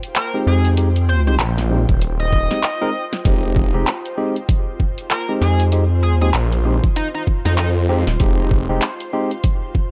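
A dry, up-front mix opens this playful, gritty glitch hop excerpt at 97 BPM in F minor, swung 16ths riding over a single Fm7 chord while an ethereal, airy pad with ensemble chorus and sidechain pumping hovers in the background. A layered electronic drum kit with a cracking snare, hi-hat and handclaps drives from the start, joined at 1.9 seconds by a thumpy, overdriven kick, as a rubbery, bouncy square bass and a swirling, thick detuned saw bass with phaser and tube saturation carry the low end. Above them, a tearing oscillator-sync lead with vibrato, 12-bit grit and dub echo carries the melody, and a clean tine electric piano through a combo amp plays pumping stabs roughened by the same sampler grit and echo.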